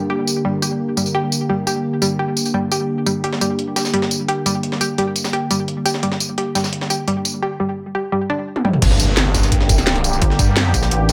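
A snarling, detuned saw bass bursts in at the drop at 8.8 seconds with a knocking electronic kick and a very quiet impact, followed by a pulsing, mellow wobble bass from 10.2 seconds, in this mechanical, tense dark technical drum and bass excerpt where an airy, nasal resonant pad holds sustained chords and a round analog pluck plays tape-echoed arpeggios over an up-front kit of cracking snare and bright hats, joined from 3.2 seconds by a gritty, pitched-up breakbeat kit, set in light reverb.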